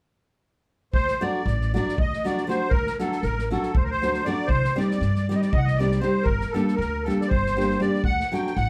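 A wet studio ambience with a short half-second decay places the listener further back in the room, in this restless, virtuosic cut from a longer Balkan wedding-band piece. Set in a straight 7/8 at 236 BPM counted in eighths, in D phrygian dominant, the musette accordion carries the melody up front with a reedy, shimmering voice from A4 to G5. Also up front, a bright, fingerpicked classical nylon-string guitar enters at 1.2 seconds to play accompaniment. Underneath, a woody, thumpy pizzicato upright bass on gut strings holds the low end from G1 to G2. An unplugged drum kit, distant and roomy, supplies kick and medium-tuned snare played with bundle sticks. The harmony moves from D to C minor and G minor before returning to D at 8.0 seconds.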